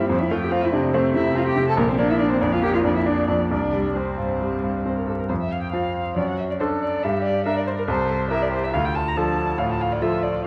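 A quick, stormy classical-period movement for piano trio, cut from a longer piece, in which a bright, brilliant grand piano sits up front in accompaniment beneath a veiled, con sordino violin melody with vibrato and portamento and a dark, muted cello second line, all three playing throughout with rubato and the trio heard through a wet recital hall and worn, warbling old cassette tape with vinyl crackle and pitch drift as the harmony moves from F through Bb and C to D/F#, Gm, C7 and Dm after a new section begins at 5.3 s.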